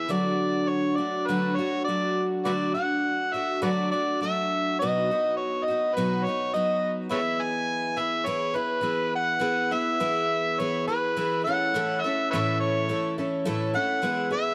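An overdriven, amplified harmonica leads this hopeful rock excerpt, its gritty tone colored by light vibrato, punchy tongue slaps and scooped notes as it carries a pop-style solo melody up front. Beneath it, a picked twelve-string acoustic guitar supplies jangly accompaniment, its bright, octave-doubled strings shimmering with an auditorium-like presence. Both parts play together from start to finish across a steady, straight feel. The harmony moves from D through B and E, and a new section begins at 9.4 seconds, landing on A before returning to E. Light reverb and a dark overall production frame the brighter guitar and the rough-edged harmonica.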